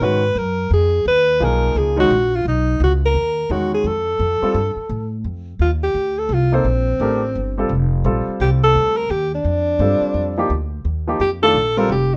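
Alto saxophone, baby grand piano and upright bass all sound together from the very start of this modal jazz excerpt, which swings in four with a searching, open mood. The alto saxophone carries the melody as an up-front jazz solo, its warm tone shaded with vibrato. Beneath it, the piano supplies accompaniment with a natural, close-up sound, and the plucked upright bass holds the low end with a woody, steel-strung voice. At 5.3 seconds the harmony settles into a new section, and the piano drops away at 11.9 seconds while saxophone and bass carry on to the cut at 12.2 seconds. Light reverb gives the trio a modest sense of room.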